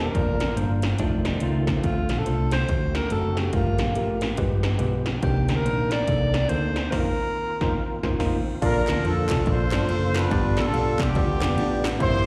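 Uptempo gospel in Bb major at 142 BPM, swung and hopeful, this soulful excerpt is cut from a longer piece and heard as a live gig through the venue's PA, with recital hall reverb. A clear alto saxophone carries the melody up front with vibrato and a jazz-style subtone until 8.2 seconds, its line touched by slapback echo. Beneath it a barky tine electric piano comps through its built-in speakers, a reedy tonewheel organ holds very quiet sustained chords with key click and slow rotary speaker, and a dark, round hollow-body bass anchors the low end. Punchy 80s electronic drums sit up front, with a gated snare, metallic hats and crash and ride cymbals, while a clean, picked electric guitar adds a brief compressed second line in the background with spring reverb. After a band accent, a tight horn section takes over the melody at 8.6 seconds with vibrato, slapback and tape echo, joined by crisp group handclaps as the chords move through Bbmaj7 to G7.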